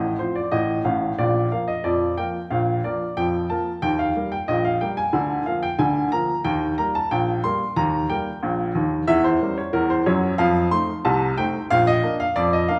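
A woody, up-front upright piano plays alone from 0.0 to 12.8 seconds in this jaunty, playful ragtime fragment, bouncing through a straight two-beat feel and a chord progression that passes through a diminished chord and F7 before settling on Bb, all set in the generous wash of a large studio reverb that gives the live-in-the-room take a warm sense of space.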